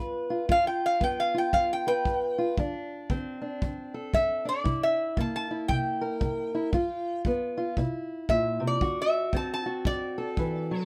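A swung eighth-note feel at 116 BPM in 4/4 drives this rollicking, laid-back acoustic country blues in G mixolydian, tuned to A4 = 436 Hz and cut from a longer piece. A fingerpicked steel-string parlour guitar opens at 0.0 s with a dark, boxy accompaniment, finger squeak audible on the strings, moving through G7, D5, C7, G7, C7 and D7. At 0.5 s a punchy kick drum played with brushes joins from a small room, and a lap resonator guitar takes the melody. The resonator, played with fingerpicks and a steel bar, carries the solo with a bright, metallic, nasal slide tone in a high register. All three parts sit up front in a light reverb, giving the small group an intimate, close feel.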